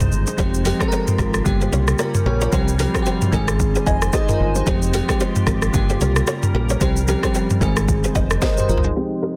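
A mellow, sultry afrobeats groove at 112 BPM in 4/4, swung at 58% on the sixteenths, driven by an up-front, electronic afro-pop drum kit with a deep kick, a sharp, softly clipped snare, dark hi-hats, rim clicks, shaker and toms, which closes with a fill from 8.4 to 9.0 seconds. A round, punchy fingered electric bass sits low and dark beneath it, while bright, dry bongos and congas struck with hard hands add a very quiet layer from 0.3 seconds. Up front, a sparkling, bell-like FM electric piano with chorus and tremolo carries the accompaniment and breaks into a fill between 3.6 and 4.7 seconds. A full-bodied, fingerpicked nylon-string guitar plays a riff with delay in the background, and a glassy, ethereal FM pad holds slow-attack chords with ensemble chorus and its own reverb. The harmony cycles twice through Fmadd9, Gdim, Csus4 and Ab, and the whole short cut from a longer piece comes through a dense, heavily limited master with light reverb and a low-pass filter.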